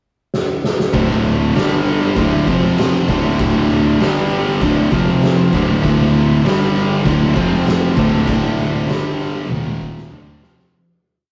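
A thick, dark fuzz guitar sits up front in this ominous, brooding stoner and doom metal piece, grinding out a low power-chord riff that circles D5, G5 and F5. An oversized, low-tuned drum kit opens with a fill at 0.3 seconds, its boomy kick, fat snare and shadowy cymbals sounding saturated and gritty in a bright stone room. At 0.9 seconds the riff arrives. It is joined by a very quiet second fuzz guitar, a bright, double-tracked high-gain guitar, and an overdriven fuzz bass in the background that plays a punchy quarter-note figure following the guitar line. The rough rehearsal-room sound carries a light reverb. A fade-out begins at 8.3 seconds as the drums close with another fill and the harmony slides through Eb5 to settle on D minor.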